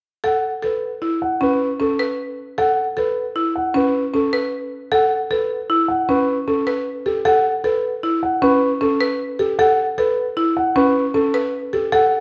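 Minimalist classical pattern music with a bright, propulsive mood, moving at 154 BPM in a straight 6/4 and centred on A mixolydian over a single Aadd9 harmony. A dark grand piano carries the melody between G4 and F#5, its tone mellow and boxy and placed up front. Alongside it, a marimba struck with medium hard mallets plays arpeggios from C#4 to B4, its hardwood bars giving a woody, buzzing, percussive sound that is dry, airy and close. Both parts play together from 0.2 s to 12.2 s. A moderate large-studio reverb with a 1.4-second decay surrounds the pair, and the piece is cut from a longer work.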